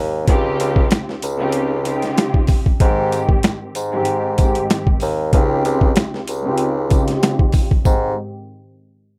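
A swung boom-bap groove at 95 BPM drives this soulful Ab major hip-hop excerpt, where a gritty, pitched-down sampler kit with a thumpy kick and high-tuned snare sits up front beside a clear, lightly vibrato bassoon playing the bass line and a lush, bowed string section under a filter sweep, moving between Dbmaj9#11 and Abmaj7 with a jingly tambourine tucked in the background of a dry, rough home-demo mix.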